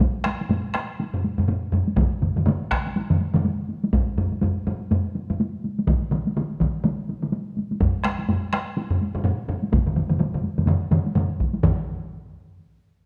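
A ceremonial, powerful Japanese traditional taiko ensemble opens at 0.0 s with two up-front groups of drums, one struck with heavy sticks and miked close, the other hit with hard sticks and compressed and saturated, before a small-room taiko ensemble on heavy sticks and compressed, saturated solo taiko drums join at 2.0 s, all over a swung 4/4 pulse that keeps speeding up inside a wet recital-hall reverb with a dark, warm production in this cut from a longer piece.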